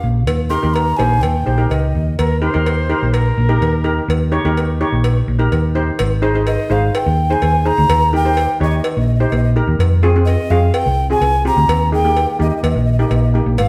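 Calypso at 126 BPM with a festive, carefree mood, cut from a longer piece and played live in one stone room with a wet reverb, moving through Eb, Ab and Fmadd9 harmonies. A breathy, bright clay ocarina carries the tongued, vibrato-tinged melody, opening with a featured solo and returning at 6.5 seconds, while a shimmering double-seconds steel pan struck with hard rubber sticks comps throughout and a dark, round, punchy hollow-body electric bass sits up front. A close, dry acoustic cowbell taps along from 0.3 seconds, and a distant, pure silver concert flute adds a brief second line from 2.2 to 4.1 seconds.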